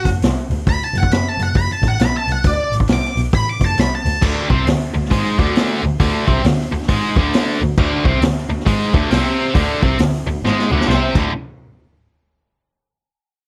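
Raunchy and gritty, this blues rock and southern rock power-trio excerpt swings at 135 BPM in 4/4. It opens with a lead electric guitar solo, an octave-fuzz part pushed up front with wah and distortion, its dark, picked tone ranging from D5 to D6 over a D chord until 4.2 seconds. A bowed double bass, woody and close with vibrato, sits underneath alongside a vintage acoustic drum kit that is punchy in the kick, with a medium-tuned snare, dark cymbals and a rolled-off top. At 4.2 seconds the solo gives way to a tight, bright, double-tracked distorted guitar riff, picked over Csus2. A drum fill closes the passage, landing on a D5 chord before the playing stops at 11.3 seconds, all set in a light reverb.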